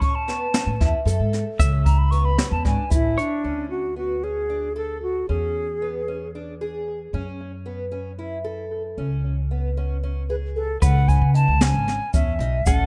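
Drenched in studio reverb, this intricate, driving progressive instrumental in F# minor moves in 7/8 at 228 BPM (eighths), with a pure, close-miked concert flute carrying the delayed melody over shimmering, octave-doubled fingerpicked twelve-string arpeggios, a woody, dark pizzicato upright bass, and a clean, compressed semi-hollow electric guitar on a second line, while an up-front brushed kit with a boomy kick and a grainy tube shaker in the background drop out at 3.3 seconds and return at 10.8 seconds.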